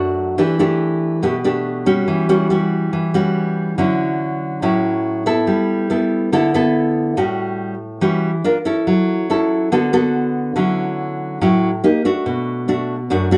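A fingerpicked, classical-style nylon-string guitar, acoustic and up front with light reverb, plays alone in this sophisticated, breezy bossa nova fragment cut from a longer piece, moving through chords such as Em11, Dmaj9 and G69 before a new section at 10.6 s brings Ebmaj7#11 and Bm7.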